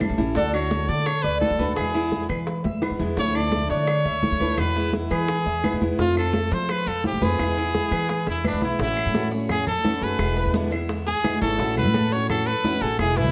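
Relaxed and danceable, this Cuban son and guajira excerpt in A major moves at 171 BPM in a straight 4/4, with a brilliant, punchy trumpet soloing up front from 0.4 seconds with vibrato and scooped notes over mellow, metallic tres arpeggios touched by tape echo, a dark picked steel-string acoustic guitar with audible finger squeak, woody pizzicato upright bass, ringing high-tuned congas and tight soft-handed bongos in the background, and very quiet, band-limited vintage claves, with drum fills near 2.6 and 8.3 seconds, set in a wet large-studio reverb.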